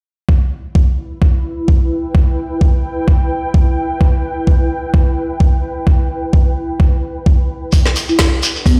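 This gritty, aggressive bass house fragment sounds as if it is played over a big sound system in a bare stone room, with a light small-room reverb on top. An overdriven, knocking electronic kick sits up front from 0.3 seconds, and at 1.0 seconds an ethereal pad of detuned sawtooth unison joins underneath, its chorus and built-in reverb giving it an airy shimmer while sidechain pumping ties it to the kick. The harmony holds on E minor before moving to D at 7.7 seconds. That change brings in a grainy, band-limited shekere and a background acoustic rock kit whose hi-hat and medium-tuned snare are thinned by high-pass filtering in a bright stone room. A brief overdriven electronic snare with a woody crack appears at 7.9 seconds, and in the final moments a dry, rustic marimba played with soft mallets adds a round, low melodic line.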